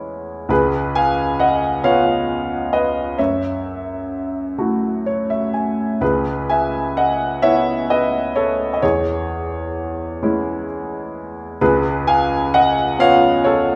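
Classical solo piano in C# minor, this reflective, dark passage, cut from a longer piece, moves in a slow, rubato 6/8 at 43 BPM (dotted quarters). A baby grand piano sits up front with a worn, open tone and long sustain, spanning C#2 to G#5 and adding a brief fill at 4.6 seconds as the harmony turns through E6, C#7, F#m7 and C#m7. A wet recital hall reverb gives the piano a church or concert hall setting.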